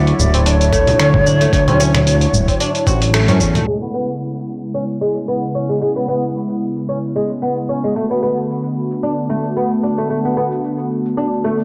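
Organic downtempo with a hypnotic, lightly swung groove, taken from a longer piece. A breathy, distant ney with vibrato carries the melody at the start, while a smooth, detuned analog pad sustains chorused chords and a sawtooth-and-square synth bass sits up front with tube saturation, both pumping against the beat. A dusty, sampler-style kit of congas, finger snaps, filtered hi-hat and shaker runs throughout, joined early by a thumpy, gritty electronic kick and a low-tuned tabla tucked in the background. A plectrum-plucked, woody oud plays deep, double-stringed arpeggios through a low-pass filter and digital delay. After a band accent at 3.1 seconds, the ney drops out, the bass stops at 3.6 seconds, and from 3.7 seconds filter sweeps move over the drums, oud and pad as the chords shift. The whole mix sounds blown-out and overdriven inside a moderate echo-chamber reverb, with a faint mains hum beneath.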